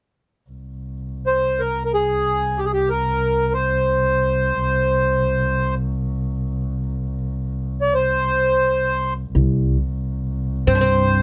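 Close, detailed microphones and a light reverb give this short Arabic excerpt an intimate, present sound. A muted double bass opens at 0.5 seconds with a single bowed, con sordino drone on a low C, veiled and dark with a gentle vibrato, held up front. Moments later a reedy accordion enters with a smooth, stately melody whose slow beating lends it a festive shimmer, and it stays prominent throughout. At 9.3 seconds the music moves into a new section as a pizzicato upright bass with steel strings adds a woody bass line beneath. A plectrum-plucked, fretless oud with double strings joins at 10.7 seconds for a brief second line just as the excerpt is cut off.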